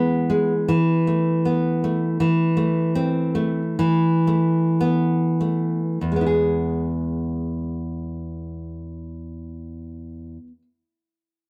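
A moderate studio reverb gives this short cut from a longer work a warm, roomy glow as a lone nylon-string guitar, bright and full-bodied, sits up front and plays a tender, romantic piece in E major. Fingerpicked with rubato in 2/4, the tempo drifts between 46 and 82 BPM and slows from 1.5 to 6.0 seconds as the harmony moves from E through Esus4 and Am/E. The music then settles back on E at 6.0 seconds for a new section that runs to the close at 10.6 seconds, the guitar ranging from deep bass notes up to G#4.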